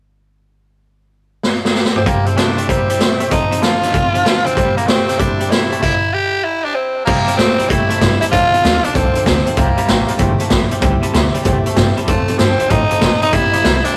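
Rowdy, upbeat rockabilly excerpt at 192 BPM with a swung feel in C mixolydian, where a gritty, punchy garage drum kit kicks off with a fill at 1.4 seconds, a raspy, breathy tenor saxophone with vibrato and analog delay carries the melody up front, a twangy electric guitar riff with tremolo, a bright jumbo acoustic guitar with finger squeak and a dark, boxy upright piano with audible action noise sit in the background over C7 and F7 changes, a stop hits at 5.8 seconds before a woody, thumpy pizzicato upright bass enters at 7.1 seconds, and the whole take carries a rough rehearsal-room sound with light reverb and faint mains hum.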